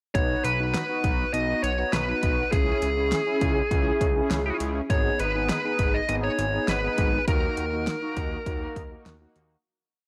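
A straight, punchy drum-machine beat with metallic hats and a fat snare drives this cool, nocturnal synth-pop piece, under a pulsing eighth-note synth bass that sounds thick, saturated and detuned. Mellow synth brass with chorus plays syncopated triad chords through B, C#m, G#m and D#m, while a dark, overdriven electric lead guitar sits up front with picked, motif-based call phrases until 9.0 seconds. The dry, gritty sound carries a touch of reverb, and the whole piece fades out from 7.3 seconds.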